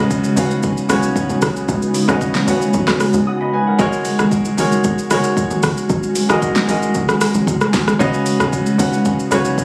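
A straight, steady groove drives this late-night, hypnotic amapiano cut from a longer piece, built on an electronic deep house kit with a deep kick, fat snare, metallic hats, rim click and shaker, layered and up front with a tape-warm character. Underneath, a tight log drum bass supplies punchy, percussive low notes with a fast attack, a noisy FM edge and a mellow decay, while very quiet congas add damped, thick-skinned acoustic hand percussion. A clear, polished baby grand piano sits forward in the mix, playing accompaniment across a broad range over suspended ninth chords that move from C#9sus4 to G#9sus4 at 3.8 seconds and return at 8.0 seconds. Behind it, a glassy FM pad holds ethereal, warbling vintage chords with a slow attack and long release, softened by ensemble chorus and its own reverb and shaped by sidechain pumping. A brief break between 3.3 and 3.8 seconds interrupts the flow, and the whole track carries light reverb, studio ambience and compression, heard through a phone recording made in the room.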